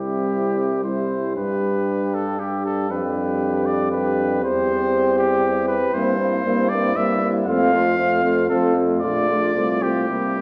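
In a flexible, rubato three-beat lilt, this noble classical brass quintet passage unfolds as a short fragment of a longer piece. A clear cornet with light vibrato carries the melody up front, a dark, smooth-topped trumpet sings the second line, and a distant, roomy French horn in the background joins a present, warm euphonium in the accompaniment. Underneath, a brilliant, vintage-toned bass trombone takes the bass, with all five playing throughout and the ensemble wrapped in a wet recital-hall reverb.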